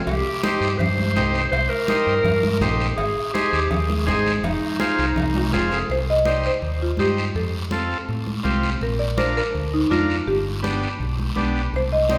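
A driving, danceable cumbia groove at 164 BPM in C minor rests on close, dry congas, a raspy guiro and a round, dark fingered electric bass held up front, while ringing cowbell and timbales sit in the background, carrying a drum fill from 5.3 seconds before dropping out at 5.8 seconds. A clear, distant clarinet with vibrato and scooped notes plays a jazz-style second line over a buzzy, overdriven vintage combo organ, then stops at 5.9 seconds, when a woody, buzzing marimba struck with medium mallets takes up the melody. The recording carries the wet reverb of a concert hall, and the clip is cut from a longer piece.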